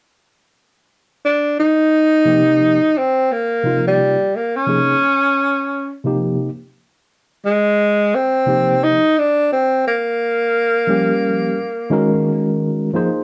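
A breathy tenor saxophone carries the melody from 1.3 s, playing in a whispered, intimate jazz style with subtone, vibrato, soft attacks and scooped notes. A worn, slightly out-of-tune tine electric piano joins at 2.3 s, lightly overdriven and heard through its built-in speakers as it accompanies the melody through chords such as Bbm7, Gm7b5 and Gbadd9. This cool hip hop fragment, cut from a longer piece, has a dark, warm production with a short, wet studio ambience and a lazy swing, running to 13.2 s.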